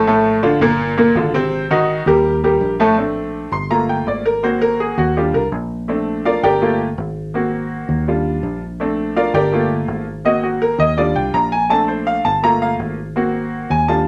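A bright, woody upright piano with a slightly detuned, up-front sound leads this sunny, joyful salsa in Bb major at 165 BPM, moving from accompaniment into a solo at 3.0 seconds that runs to the end of the cut. Beneath it, a fingered electric bass with a dark, round, punchy tone sits lower in the mix, its foam-muted attack giving a direct, amped feel. The whole cycles through a repeating Bbmaj7, Gm7, Ab7, Ebmaj7 progression, bathed in a wet club reverb that lends a brief, lively ambience.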